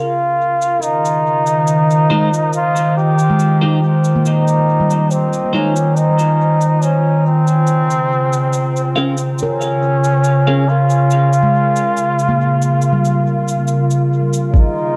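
Set at a slow 70 BPM in a straight 4/4, this ambient dub fragment moves with a spacious, meditative calm, its brushed cabasa entering at 0.6 seconds with a dark, smooth texture coloured by dub echo. A warbly, lo-fi tape-like pad sits up front with slow-attack sustained chords, chorused and bathed in its own reverb, moving from Bbm to Fm7 and then to Bbm7. Over it, a trombone with a straight mute carries the solo melody in a nasal, brilliant voice with vibrato, sounding distant and roomy as dub echo trails each phrase. A soft, ringing handpan plays filtered arpeggios in the background through analog delay, while a clean, twangy electric guitar adds bright, picked stabs with lush chorus and echo between 2.1 and 10.6 seconds. At 14.5 seconds a muffled, overdriven electronic kick thumps up front in the small-room, echo-heavy mix before the fragment breaks off.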